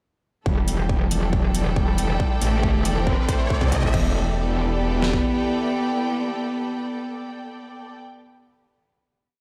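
A metallic, distorted wobble bass snarls up front from 0.5 to 5.2 seconds over a punchy, overdriven half-time dubstep kit with a deep snare and clanging hats, while a dark, woody cello repeats a bowed riff through gritty 12-bit delay. A close, rich string section and a thick, detuned unison pad set in the background both pump, and a riser and drum fill build toward 3.9 seconds in this menacing, chaotic E minor piece at 138 BPM before a final Em7 chord rings out.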